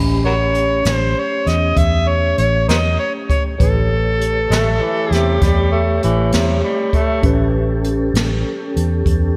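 A slow, swaggering blues in a rolling 12/8 opens on an A7 chord, with a clean tine electric piano through a combo amp in the background, a mellow, flute-like tonewheel organ holding soft sustained chords through a slow rotary speaker, and a dark, round, foam-muted fingered electric bass sitting up front. At 0.3 seconds a gritty, overdriven harmonica takes the soulful lead, amplified and up front, with vibrato, tongue slaps, scooped notes and a slapback echo. A jazz brush kit joins at 0.5 seconds, its boomy kick, medium-tuned snare and hi-hat sounding distant and roomy. At 4.5 seconds a warm, vintage tenor saxophone adds a low second line in a subtone with vibrato and its own slapback echo. The analog chorus on the electric piano adds gentle shimmer, while a concert hall reverb gives the whole band a big arena sound in this brief excerpt from a longer piece.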